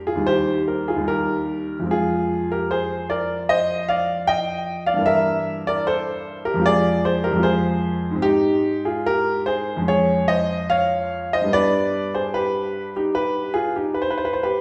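This serene, flowing baroque-style classical suite movement features a solo grand piano with a smooth, vintage, up-front tone, played with rubato at 74 BPM in 4/4 and tuned to A4 = 439 Hz, ranging from Eb2 to G5 through chords of Eb, Fm, Edim/G, Ab, Db/F and G, set in a wet recital hall reverb across this 14.6-second portion of a longer piece.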